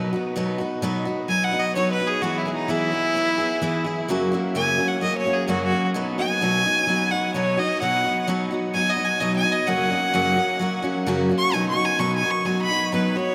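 A bright, full-bodied picked steel-string acoustic guitar with fresh strings opens this easygoing, down-home country excerpt, and a boxy, focused fiddle enters at 1.3 seconds to carry the melody with light vibrato. Both instruments sit up front, the fiddle bowed by a single player over the guitar's accompaniment on a simple progression that keeps returning home. A huge, wet reverb places the pair in a vast, echoing space, giving the playing a long, lingering tail.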